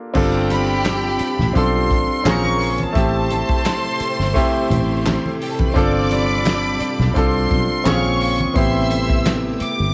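Cinematic and silky, this 1970s-style soul excerpt at 86 BPM with a light sixteenth-note swing sets a bright, up-front concert grand piano over a punchy, fat-snared drum kit, a dark, round fingered electric bass with tube saturation and low-tuned background congas, while a clear studio string section plays a second line, a very quiet vintage string machine holds mellow sustained chords, a chamber violin section enters at 0.5 s with the soft-attacked melody and hollow handclaps join at 0.9 s, all moving over G7sus4, Bbm7 and Am7 as the piano, drums and both bowed sections carry a cassette-tape grain.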